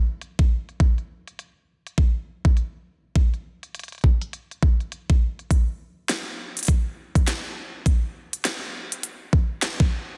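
Gritty and playful, this short glitch hop cut from a longer piece rides a swung sixteenth-note feel in 4/4. A pop drum kit of hi-hat and snare opens at 0.2 s, joined by an electronic kick drum at 0.4 s, and both sit up front in a layered, produced electronic sound. The kick is the louder of the two, a knocking thump bathed in studio reverb. The kit pairs a fat snare with crisp hats, each shaped by high-pass and low-pass filters, and the kit also carries studio reverb. From 5.5 s the groove moves into a build-up that runs to the end, all set in a digital ambience with a dense, heavily limited modern master.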